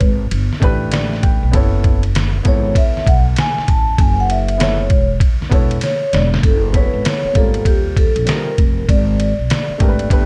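Smoky, mellow jazz-hop with a swung feel, cut from a longer piece, where a ringing, metallic vibraphone with slow motor vibrato and plate reverb takes a solo over a growly, woody pizzicato upright bass and a gritty, compressed, pitched-down drum kit with a thumpy kick, sitting up front in a large room. A dark upright piano with its own plate reverb enters at 0.6 seconds with a short fill and then settles into accompaniment. A drum fill at 5.8 seconds leads into a new section at 6.4 seconds, as the solo gives way to the vibraphone melody.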